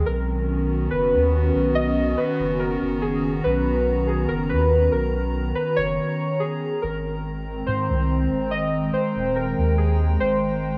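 A lightly swung 4/4 groove carries this intricate, wistful IDM excerpt, where warbling, lo-fi synth keys with chorus and tape echo sing a nostalgic melody over a hollow, flute-like pad holding soft detuned chords and a round, deep analog bass, all set in a small room ambience as the harmony shifts from Bmaj9 to Abmaj9 at 6.8 seconds.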